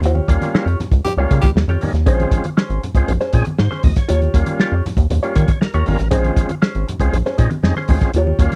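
A straight 4/4 funk groove at 118 BPM in Bb dorian drives this short, cut-down passage, with a muffled, dry soul drum kit and a rubbery, bouncy square bass up front while low-tuned congas sit in the background and a clean electric guitar with wah plays accompaniment. A percussive tonewheel organ, lightly overdriven through a fast rotary speaker, punches out stabs and takes a fill from 5.1 to 6.1 seconds, after the whole band hits an accent over the opening Eb9 chord, and a raspy, growling tenor saxophone slips in a brief G4 at 1.0 seconds. The sound is close and dry, like a 1970s studio session, alternating between Eb9 and Bbm9.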